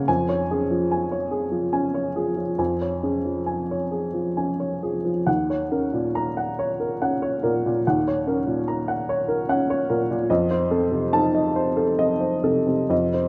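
A light reverb surrounds a solo upright piano that sits up front, woody and slightly detuned, with its action noise audible. This short excerpt of neoclassical minimalist piano moves in a rubato 3/4 at roughly 64-74 BPM in Db major, spanning Eb2 to Bb5 as the harmony passes from Db/F to Ebm7 at 5.3 seconds and F7 at 10.3 seconds. The mood is intimate and peaceful.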